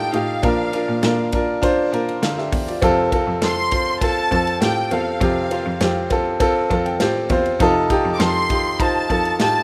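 A clear, woody upright piano sits up front in this hopeful, uplifting piano-driven pop piece at 100 BPM in F major, carrying the accompaniment through chords of Bb, F and F7 and adding a fill from 6.4 to 7.6 seconds, while a lush, smooth violin section carries the melody with vibrato, a bright, biting cello holds the bass, and a modern acoustic drum kit with a punchy kick, hi-hat, ride and snare keeps a straight 4/4 pulse, set in a rough home-demo mix with light reverb.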